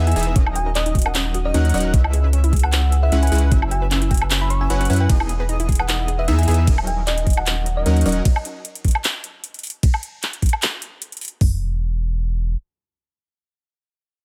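A knocking trap kick and crisp hats sit up front in this playful, euphoric future bass drop, joined by a dubstep kit's metallic hats, handclaps, ride and woodblock over a half-time, lightly swung groove. A thick, saturated sub bass and bright, detuned supersaw stabs pump with sidechain beneath a round, tine-like thumb-piano pluck melody with chorus and delay. An airy, dreamy lead and a lush unison pluck with digital delay add background arpeggios over chords opening on D#m7; the melodic layers are gone by 8.3 seconds, the drums stop at 11.5 seconds, and the sub bass returns briefly at 11.4 seconds in a dry mix.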